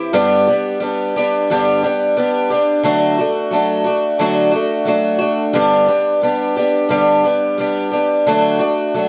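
A dark production with light reverb frames this short rock excerpt, which has an open-road, nostalgic mood and a straight pulse. A lone picked twelve-string acoustic guitar sits up front, its bright, shimmering, octave-doubled tone carrying a boxy, archtop character as it moves between G and D chords, shifting to D at 2.9 seconds and back to G at 5.6 seconds.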